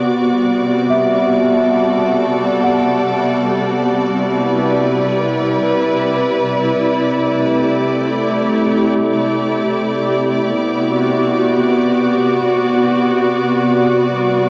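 Warm and weightless, this ambient passage drifts at 69 BPM as a rich, bowed studio string section holds smooth sustained chords up front, moving from Gmaj9/C through D9sus4/C and Em7/C to Gmaj7/C over a steady C bass. A delicate, bell-like celesta with soft felt hammers plays delayed arpeggios in the background from 0.9 to 3.9 seconds, while a distant, lush symphonic violin section hovers high above and fades in from 3.5 seconds. The whole piece sits in a huge, wet reverb and carries the worn, warbling pitch drift of old cassette tape, and it is cut from a longer piece.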